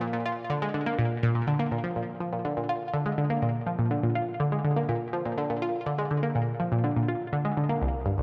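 A solo analog pluck opens this 8.2-second fragment of a longer ambient piece, its round, nasal sawtooth tone carrying a noise layer and a filter sweep, with a fast attack and short decay. The pluck sits bright and up front, ranging from C2 to F4 at a straight 123 BPM in 4/4, colored by chorus, phaser and delay. A wet concert hall reverb and cassette tape character give the cosmic, expansive mood its sense of vast space.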